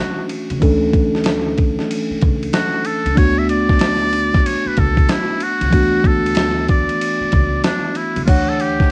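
A muted trumpet and a mellow tine electric piano open this relaxed, warm jazz-hop fragment at 0.0 seconds, the trumpet carrying a smooth jazz-style solo line with a buzzy, thin edge and vibrato while the clean electric piano comps through its built-in speakers. At 0.3 seconds a dusty, sampler-style soul drum kit enters with a thumpy kick, fat snare, hi-hat, ride and crash, sounding compressed and gritty, as if re-recorded in a large room and then passed through cassette tape. A woody, growly upright bass joins at 0.5 seconds, plucked low on steel strings and sitting quietly beneath the other parts. The harmony drifts from Dmaj9 to Bm9/D and D6 before returning to Dmaj9, all over a lazy, swung 16th-note groove. Trumpet, electric piano and drums sit up front in a light reverb, and the whole short cut carries the soft haze of a home cassette recording.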